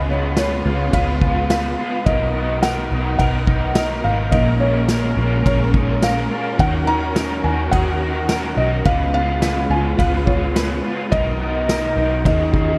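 Melancholic and haunting, this dream pop passage cut from a longer piece moves at 106 BPM in Eb minor, where a soft, felt-muted upright piano with audible action noise carries the melody through delay over a raw, overdriven garage guitar with harmonic tremolo and analog chorus, twangy clean electric guitar arpeggios in the background, a smooth-topped bowed string section with vibrato and portamento, a round foam-muted fingered bass, and a vintage drum kit entering at 0.4 s with punchy kick, dark cymbals and tambourine, all set in a lush hall reverb with bright 1980s-style digital production as the chords cycle from Db7 through Bmaj7, Bbm7 and Ebm7 to close on Ebm11.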